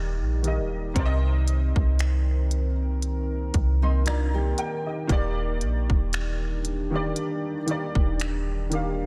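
A light reverb gives this short cut from a longer contemporary R&B piece an intimate, romantic and dreamy sound, moving at a slow 58 BPM in 4/4 with a gentle 16th-note swing in Eb major. A soft, round 808-style bass sits up front with a deep sine tone and fast, decaying attack, while a baby grand piano plays accompaniment with audible action noise, short sustain and a touch of analog chorus. Beneath them, a moody ambient pad holds sustained chords with a slow attack, a warbling vintage sawtooth character, a sub octave and its own built-in reverb. A trap drum kit enters at 0.4 seconds with finger snaps, crisp hats and a hard-clipped kick, its electronic, produced sound placed close to the listener. Between 3.8 and 5.1 seconds, a fingerpicked nylon-string guitar adds brief classical arpeggios with finger squeak, subtle chorus and analog delay, as the harmony, having moved from Ebmaj7 to Cm7 at 1.0 second, returns to Ebmaj7 at 5.1 seconds.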